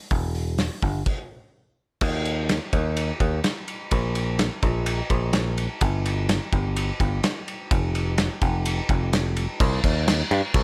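Brooding and cathartic, this short cut from a longer quiet-loud alternative rock piece moves at 126 BPM in a straight 4/4, tuned slightly under standard pitch with A at 438 Hz. A picked electric bass carries the low end from E1 to G2, its tone bright, growly and punchy, heard directly and placed up front. A loose indie drum kit plays alongside it, with kick, snare, hi-hat, ride and crash cymbals in a studio room that pumps audibly around them. The kit sounds saturated and gritty, with dark cymbals, a medium-tuned snare, a punchy kick and a rolled-off top end, also sitting close to the listener. Both parts halt together in a stop from 1.1 to 2.0 seconds before pushing into a longer section that runs to 9.6 seconds, and a brief closing section follows, all in a dry sound with little reverb.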